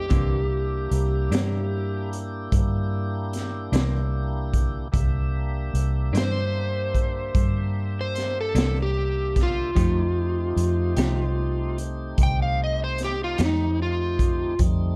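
An overdriven slide guitar opens this short cut from a slow blues in 12/8, its melody riding up front alongside a tonewheel organ's full, clean sustained chords, heard with key click and a slow rotary speaker. Underneath, a vintage electric bass, played with the fingers and foam-muted, sits dark and round near the front of the mix. From 0.1 seconds a raw garage drum kit adds hi-hat, a punchy kick and a high-tuned snare, with a saturated, small-room character and a rolled-off top. A picked electric guitar through a small old amp, slightly broken-up and twangy with tremolo, fills in accompaniment in the background until 13.6 seconds, while plate reverb colours the slide, organ and rhythm guitar. The harmony moves from C9 to F9 at 9.8 seconds, keeping the mood rollicking and gritty within a dark, warm production.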